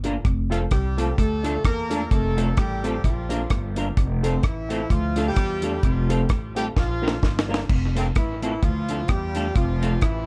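Cheerful and upbeat, this short ska clip cut from a longer piece pairs a woody, thumpy pizzicato upright bass and a dark, dry reggae drum kit with a high-tuned snare and tight kick up front, under a clean semi-hollow electric guitar with ensemble chorus, intimate upright piano stabs in the background that stop at 7.6 seconds, and a mellow, tight horn section in octaves carrying the melody from 0.5 seconds, with tape echo on all but the bass and a drum fill leading into the repeated section at 7.7 seconds.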